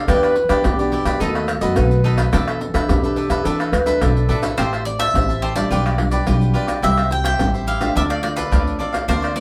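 Recorded live by a band in one small, reverberant room, this nostalgic, bittersweet samba and choro fragment in A minor moves at 107 BPM, with a dark, close-miked clarinet playing a classical-style second line until 4.6 seconds, when a bright, double-strung bowl-back mandolin enters with the melody over crisply picked cavaquinho, full-bodied thumb-plucked nylon-string guitar with audible finger squeak, thumpy, woody pizzicato upright bass, and up-front, vintage-toned maracas, deep surdo, pandeiro and tamborim played with soft hands.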